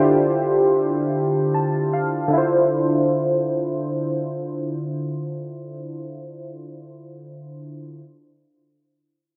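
Drenched in a lush, wet hall reverb with a long 2.3-second tail, this short excerpt from a longer R&B piece feels spacious and nocturnal, full of late-night longing. The sole instrument is a set of warm analog synth keys, sitting up front as accompaniment and spanning D3 to A5. Their sawtooth tone is detuned and round, with a fast attack and a decaying body, coloured by chorus, phaser and a low-pass filter. A filter sweep shapes the keys through the opening passage, and a short fill arrives at 1.1 seconds, carrying on until a new section opens at 2.3 seconds. The music opens on a Dm7 chord, tuned to A4 = 442 Hz, giving the whole a hazy, suspended ache.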